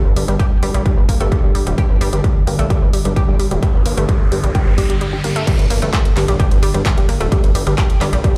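A deep, moody ambient pad drones in the background from the start of this dark, driving peak-time techno excerpt, breathing with sidechain pumping under chorus and its own reverb. It is soon joined by a gritty, aggressive synth bass, a bright, wave-folded analog pluck riff with tube saturation and delay, muted dub chord stabs soaked in tape echo, and a dry analog drum machine of claps, hats, rim clicks, ride and crash, alongside an overdriven, distorted kick that sits up front. An electronic riser climbs from 3.3 seconds through a brief break, and an impact lands at 5.5 seconds as the track drops back in, all played through a big sound system in a bare room with large studio reverb.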